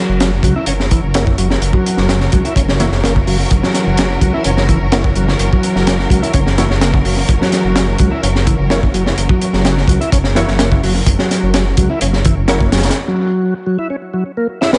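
Lush bowed strings pumping under sidechain and a smooth tonewheel organ riff through slow rotary speaker, chorus vibrato and analog delay open this swaggering, gritty 127 BPM breakbeat excerpt on an F#7 chord, joined at once by a deep, rumbling detuned saw bass and a crunchy, up-front breakbeat kit with punchy kick and high-tuned snare, while bold orchestra-hit-like synth stabs with cassette-tape color and a filter sweep sit in the background of an echo-heavy mix, before the strings and bass drop out for a break at 13.0 seconds and a drum fill lands at 14.6 seconds.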